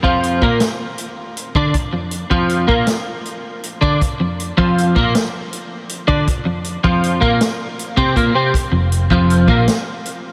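Carefree and jangly, this short indie rock fragment drifts along at 53 BPM in a lilting 6/8 with a straight feel. A clean, compressed twelve-string electric guitar sits up front, playing a riff coloured by ensemble chorus, its tone warm over an F5 chord. A vintage acoustic drum kit with a punchy kick, medium-tuned snare and hi-hat keeps time from the start, its rolled-off top giving it a warm, natural studio-room character. Near the close, at 8.7 seconds, a dark, round picked electric bass enters with an amped, punchy tone, staying low in its register. The whole mix is dreamy and soaked in a huge ambient reverb that lets the sound hang in the air, and the piece is cut from a longer work.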